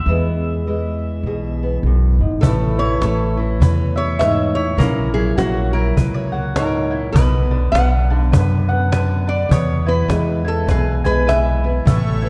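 Set in a dark, warm concert-hall reverb, this hopeful, peaceful acoustic folk passage in A major moves at 102 BPM with a gentle swing, opening with a brief twangy phrase of clean electric pedal steel over classical fingerpicked nylon-string guitar and a woody, up-front pizzicato upright bass, before a metallic, nasal lap resonator guitar takes a slide solo with a steel bar at 2.4 seconds, joined by round, mellow mandolin arpeggios and a snappy cajon, until soft, shimmering pipe organ celeste chords arrive at 11.9 seconds.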